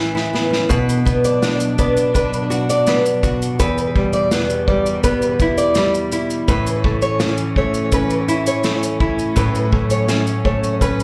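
A bright, fingerpicked nylon-string guitar sits up front in this reflective, tender acoustic pop excerpt, its classical tone marked by audible finger squeak and a plate reverb. An unplugged drum kit, played with bundle sticks, enters at 0.2 seconds with a short fill, and its tight kick, medium-tuned snare and shaker keep a straight pulse in a studio-room sound. At 0.7 seconds a fingerpicked steel-string acoustic guitar arrives with high arpeggios, its warm concert tone shaped by delay, slapback echo and plate reverb. At the same moment a studio string section comes in, bowed sul tasto with a soft attack, holding pure, floating chords far in the background. The harmony moves from Aadd9 into Bm, then Em, A and F#m/A. The whole excerpt is heard as a live gig through the venue's PA, carrying a light club reverb.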